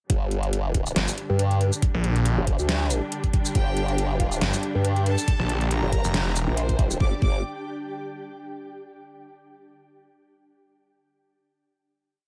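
Up-front, small-room drums and two bass parts dominate this menacing, aggressive half-time wobble dubstep piece: a knocking electronic kick and a kit of deep snare, metallic hats and shaker drive the drop, while a chorused, overdriven formant-sweep wobble bass changes its wobble speed, and a bright, growling saw bass enters at 1.0 seconds with distorted, chopped phrases answering it; behind them, a distant symphonic string section holds lush, pumping chords and an ethereal tremolo pad drifts in, a clear chamber violin section adds an intense repeating riff in octaves with delay from 3.5 seconds, and the pad's final chord carries on to 8.7 seconds.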